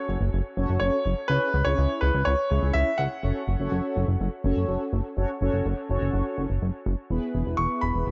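A straight 124 BPM 4/4 pulse drives this cool, melancholic synth-pop piece in F# minor, where a clear, intimate concert grand piano with audible action noise and dub echo carries the melody, falling silent at 4.6 seconds and returning at 7.6, over mellow, brassy synth brass with chorus, dub echo and a moving notch, and a glossy, detuned chorused synth bass that sits dark and up front, the whole mix echo-heavy and set in moderate spring reverb.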